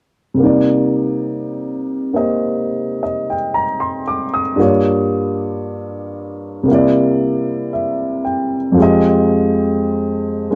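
A woody, intimate upright piano plays alone through this short jazz ballad passage, entering at 0.3 seconds and carrying on to 10.6 seconds. Its vintage tone has long sustain and sits up front, with the audible action noise of the instrument adding to the close, personal feel. The mood is intimate and wistful, moving at a slow 57 BPM in 4/4 with a swing on the eighth notes, in C minor and tuned to A4 = 445 Hz. The harmony passes from Cm7 to Gm7b5, then C7, and arrives at Fm7, with the piano ranging from F2 up to Eb6. The dry, close sound of a small room recalls a 1970s-style studio, and the passage is cut from a longer piece.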